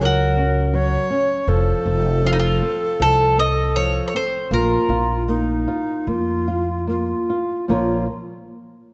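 A bowl-back mandolin carries the melody up front, its picked double strings ringing with a warm, acoustic shimmer in this passionate, mournful fado-style ballad, which is cut from a longer piece. Close beside it, a breathy bass recorder sings a second line with a woody chiff on each crisp attack and an unsteady vibrato. Underneath, a flamenco guitar thumb-plucks a dark, boxy accompaniment, with finger squeaks audible on the strings. A pizzicato upright bass on steel strings sits forward with a woody, low resonance, anchoring the slow, rubato flow as the harmony moves from Gb through F toward Bb minor. The mandolin drops out at 6.9 s, and at 7.7 s the music turns to a new passage while recorder, guitar and bass play on in a moderate concert hall reverb, with the top end gently rolled off.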